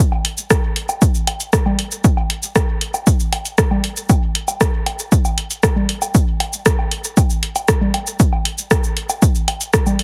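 An overdriven electronic kick drum sits up front in this cavernous, hazy techno excerpt, layered and produced, entering at 0.5 seconds and driving a straight 4/4 pulse at 117 BPM. Just before it, a punchy analog drum machine comes in at 0.2 seconds with hi-hat, rim click and shaker, its tape-tinged tone carrying the character of a small room. Woodblock and congas open the piece at 0.1 seconds, sitting lower in the mix, their analog sound pumping under sidechain compression and trailing into dub echo. A light reverb lends the whole a faint sense of space, while heavy multiband compression squeezes the mix into a radio-like sound. Cut from a longer piece, this passage holds to a single section throughout, built purely from percussion.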